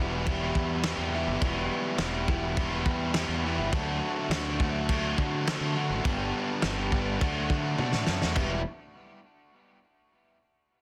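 A bittersweet, moody indie rock passage in E minor opens with a bright, distorted fuzz guitar riff up front, a compressed overdriven electric guitar riff tucked in the background with subtle chorus and tape echo, a growling fingered bass with overdrive, and very quiet, clean tonewheel organ chords turning through a slow rotary speaker. At 0.3 seconds a loose acoustic drum kit joins in a studio room, up front and saturated, with a fat snare, punchy kick, crash cymbal and toms, its top end rolled off. The tempo sits at a straight 104 BPM in 4/4, and the harmony moves from Em7 through Dadd9 and Gadd9 to D. A drum fill at 7.8 seconds leads into a return to E minor at 8.4 seconds, where the music shifts into a new section. The sound is dense and heavily limited in a modern master, with light reverb, and the recording is cut from a longer piece.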